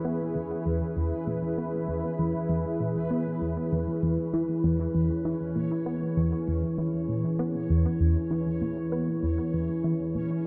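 A tight, driving sequenced synth sits up front in this short cut from a longer piece of ambient, sequencer-driven space music, playing a riff between E2 and B3 with a detuned sawtooth-and-pulse tone, a wave-folded edge and a fast filter pluck, softened to a mellow colour by chorus, phaser and analog delay. Alongside it, a sweeping resonant pad holds sustained chords from E3 to B4 throughout the 10.5 seconds, its detuned sawtooth and sine layers evolving through a slow-attack filter swell and long release, also chorused and placed up front. Much further back, a bubbling stepped-filter texture drifts between C#4 and C#5, its detuned sawtooth tone jumping through random resonant filter steps, bathed in chorus and its own reverb. The mood is luminous and expansive at 98 BPM in a straight 4/4, resting on an E major chord and tuned to A4 = 441 Hz. A wet plate reverb with a 2.7-second tail frames a dark, warm production.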